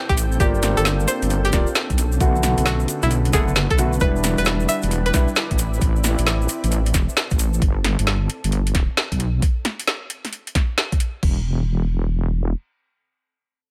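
A deep, soft wobble bass sits up front in this skippy, bouncy two-step garage passage, its dark, detuned chorus tone running until 12.5 seconds. Layered electronic drums carry the swung groove, with a knocking kick and crash on one overdriven kit and a woody snare and metallic hi-hats on another, joined by a grainy, close egg shaker. A string-like resonator pluck plays a twangy, bright melody through chorus and dub echo, while a mellow grand piano adds intimate stabs with audible action noise and its own dub echo. Beneath them, a very quiet analog pad holds warbling, wave-folded chords and a granular cloud pad drifts in the background with built-in reverb, both ending at 7.6 seconds. The chords move through Gm7, Bm7, Em7 and Am7 before settling on G5, all within a digital ambience in a fragment cut from a longer piece.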